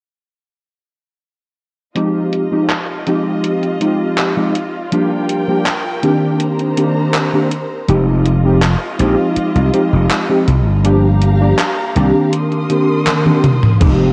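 A hazy, melancholic vaporwave fragment in F dorian opens at 1.9 seconds with warbling lo-fi synth keys, their detuned, mellow tone smeared by ensemble chorus and tape echo as they carry the accompaniment at a slow 81 BPM in a straight 4/4. Almost at once a rich studio string section joins with bowed, softly attacked sustained chords full of vibrato, while a gated 80s digital drum machine brings crash cymbal, handclaps, hi-hat and toms, its gated reverb and muffled, filtered top giving it a tape-warm, sampler-style character up front. The harmony circles through Fm7, Gm7 and Cm7 twice. At 7.9 seconds a gritty slap bass arrives, overdriven and growly with tube saturation, sitting bright and punchy in the foreground. A drum fill rolls through near the end, and a thumpy electronic kick drum lands just at 13.8 seconds before the cut, the whole piece washed in light digital ambience and a cassette-tape haze.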